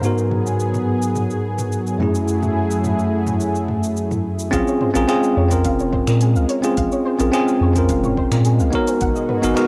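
A bell-like, bright tine electric piano opens this smooth sunset chillout piece with a filter sweep and analog delay, over a lush, warbling unison pad with chorus and a deep house drum kit of finger snaps, smooth hi-hat, shaker and toms colored by cassette tape. At 4.5 seconds a round, nasal analog bass arrives up front, together with a deep electronic kick sitting in the background, while a soft pluck adds gentle arpeggios through ensemble chorus and delay. A moderate spring reverb and the home cassette recording give the piece a homespun, warm character.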